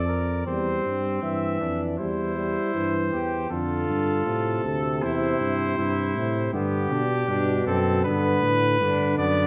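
Lively and elegant, this short classical cut from an imitative brass canzona in C major moves at 79 BPM in a straight 4/4, with a close-miked, up-front cornet carrying the melody over a soft-attacked, distant trumpet second line, a dark tuba bass with light vibrato and a smooth top, and a mellow euphonium with vibrato entering at 0.5 seconds in accompaniment, all set in a wet recital-hall reverb.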